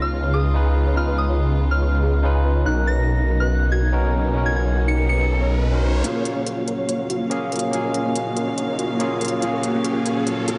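A soft, pure FM synth bell opens this lush, euphoric future bass excerpt with a mellow melody high in its range, colored by chorus and dub echo, over a gritty, barky overdriven tine electric piano that plays accompaniment through a combo amp with its own dub echo. Beneath them, a distant, smooth string section holds bowed chords with vibrato, while a dark, round pluck sits in the background, tracing decaying arpeggios through ensemble chorus and echo. A thick, saturated detuned saw bass sits up front in the half-time groove until 6.0 seconds, and an electronic riser enters in the background from 4.5 seconds to build anticipation. At 6.0 seconds the second section arrives as the harmony shifts to a major seventh chord: a huge, compressed supersaw with a sub octave and vibrato takes up a riff, its low-pass filter sweeping through the build-up. Crisp electronic hi-hats with studio reverb join at the same moment, and the whole mix carries a light reverb and a softened top end.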